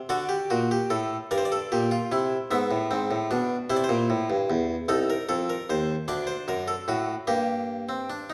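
Classical baroque-style fugue in three voices for solo harpsichord, a joyful, lively excerpt in a straight 6/8 that is cut from a longer piece. The single Italian-style instrument, strung with one set of strings, sits up front with an airy, bright, plucked tone, spanning from deep bass notes to the upper treble. A wet recital-hall reverb surrounds it as the harmony moves through D, G minor, E7 and A minor before settling back on G minor near 7.3 seconds.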